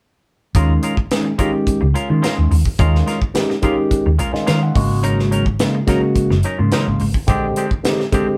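A band playing live in one room, caught with moderate studio reverb, opens this soaring, bright stretch of electric jazz fusion cut from a longer piece. A woody, round fretless electric bass lays down the low end over a tight funk drum kit with a high-tuned snare and tight kick on hi-hat, kick and snare, while a barky tine electric piano, lightly overdriven through a combo amp with phaser, sits up front and takes a fill between 3.9 and 5.0 seconds. A clean, picked semi-hollow electric guitar adds compressed stabs as the harmony moves from Eb9sus4 to Ab9sus4 and lands on Bb13.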